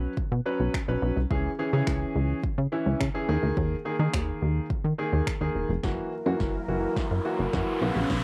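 Confident and energetic, this dance-pop excerpt at 106 BPM pairs a clear, intimate grand piano with a plucky, funky analog bass, both pumping against a deep house kit of overdriven kick, punchy snare and finger snaps that joins at 0.2 seconds, before a smooth pad drifts in behind at 5.8 seconds and a riser, drum fill and filter sweep build over an F#7 chord, all carrying the light reverb and faint mains hum of a home cassette recording.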